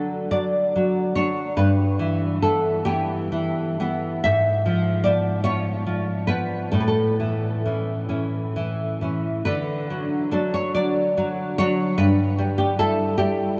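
A dark, full-bodied nylon-string guitar carries this romantic solo classical piece, fingerpicked up front and touched with a lush chorus. It moves in a slow, rubato 6/8 at around 41-52 BPM counted in dotted quarters, settled in D major, and the mood is nostalgic and warm. The guitar ranges from G2 up to E5 as the harmony passes from D through Em/G and a tense E13b9/G# to A at 6.7 seconds, then returns to D and Em/G. A huge ambient reverb with a 7.4-second decay soaks the whole mix, giving the sound a dreamy quality. This short excerpt of 13.6 seconds is cut from a longer piece.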